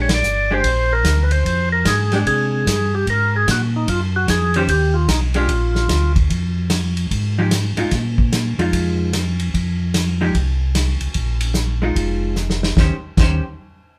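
The excerpt opens on a band accent: a percussive tonewheel organ takes the melody through a slow rotary speaker, its second-harmonic percussion and key click sitting full and clean up front. This is a bluesy, soulful soul jazz organ trio at 149 BPM in 4/4, swinging its eighth notes. Beneath it, a second, mellow tonewheel organ plays the bass line, round and dark with vibrato and the same slow rotary. A vintage hollow-body electric guitar supplies picked, compressed accompaniment in a shadowy, clean tone. A vintage acoustic drum kit with punchy kick, medium-tuned snare, hi-hat, ride, crash and dull cymbals pumps in a small room with a rolled-off top. The organ melody stops at 6.1 seconds, leaving guitar, bass organ and drums to carry the harmony from Fm7 through Bb7sus4 until a drum fill at 12.4 seconds leads to a closing Eb6, all captured live in one room with moderate reverb.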